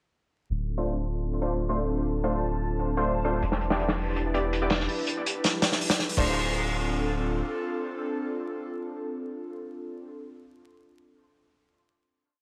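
Dark and nostalgic, this short drum and bass piece in a jungle vein opens on a breakdown where an airy, breathy pad holds chorused chords under a filter sweep, a round dub sub bass sustains long low notes, and a reversed, dreamy texture holds a high note in the background. Bold, orchestra-hit-like synth stabs play syncopated chords in a parallel shape with dub echo, while a gritty, saturated breakbeat kit with a tight kick and heavy chopping sits up front from 3.4 to 6.2 seconds. A final hit arrives at 6.4 seconds, and the mix carries vinyl crackle and a low-pass filter over a light studio reverb.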